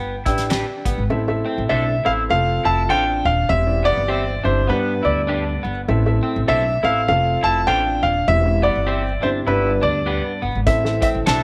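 A clear, up-front concert grand piano carries the melody over a slightly broken-up electric guitar riff and a woody pizzicato upright bass, opening this joyful, swinging 1960s-style soul passage cut from a longer piece. A dark, boxy upright piano with audible action noise joins in accompaniment, a bright, twangy second guitar adds lo-fi stabs, and a cloth-damped drum kit with a fat snare and tight kick plays from 0.3 to 1.0 seconds. The drums return at 10.7 seconds alongside very quiet, lightly overdriven tonewheel organ chords through a slow rotary speaker, all set in a small room with light reverb.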